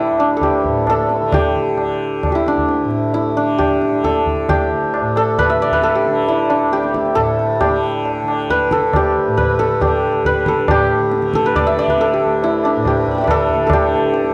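A ringing, hammered santur carries the melody up front in this radiant, devotional Hindustani classical excerpt in raga durga on D, moving in 7/4 at 135 BPM and speeding up throughout, over a softly plucked, buzzing tanpura drone and a low-tuned, distant tabla that enters at 0.2 seconds, all captured in a dry, close 1970s-style studio sound, with a new section arriving at 10.7 seconds.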